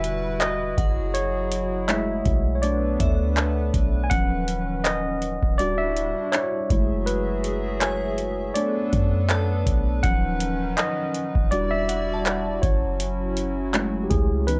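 A dry, gritty recording with transformer saturation and little reverb frames this moody, late-night contemporary R&B excerpt, built on a lightly swung groove and drifting minor-ninth chords. A worn, slightly out-of-tune tine electric piano sits up front and carries a solo throughout, over a booming analog drum machine with a deep kick, metallic hi-hats and handclaps, plus a clean, boomy 808-style bass with a dark sine tone. A hollow, flute-like pad holds sustained chords with chorus and sidechain pumping, while a crystalline FM synth bell, treated with chorus, phaser and tape echo, glints faintly in the background from 0.8 to 13.2 seconds.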